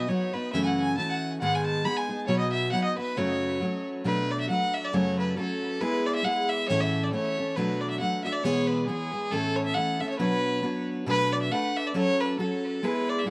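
Close, detailed microphones and a moderate studio reverb frame this wild, dark and lively Celtic polka in swung 2/4 at 137 BPM, where a nasal, reedy bowed fiddle with tape echo carries the melody over a bright, full-bodied fingerpicked steel-string acoustic guitar, both playing throughout this fragment of a longer piece as the key moves from F# dorian to B dorian at 4.1 seconds.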